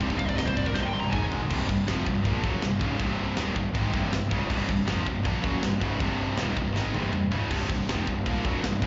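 Opening on a distant, lush string chord over Cm, this epic, relentless heavy metal excerpt at 160 BPM in C minor drives three bright high-gain and overdriven rhythm guitars (one double-tracked) with a growly, fuzzy bass and an up-front, big-room drum kit with drum fills, while a dark, distorted lead guitar with slapback and tape echo solos from 0.2 to 1.2 seconds, and the strings return at 7.5 seconds, the whole mix heard as a live gig through the venue's PA with recital-hall reverb and a muffled top end.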